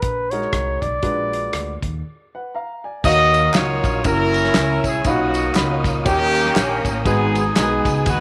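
A swung 4/4 groove at 120 BPM drives this fervent, solemn uptempo gospel fragment in Eb minor, with a small-room soul drum kit and woody pizzicato upright bass carrying the rhythm throughout and a natural-sounding upright piano joining them at 0.3 seconds. A breathy flugelhorn with light vibrato sings a short jazz-style solo line up front until 1.8 seconds, and a break follows before the second section opens at 3.0 seconds. There a punchy, clear horn section takes over the melody, with a smooth tonewheel organ through a slow rotary speaker holding chords in the background, and tambourine and group handclaps adding live-room sparkle, all bathed in moderate spring reverb.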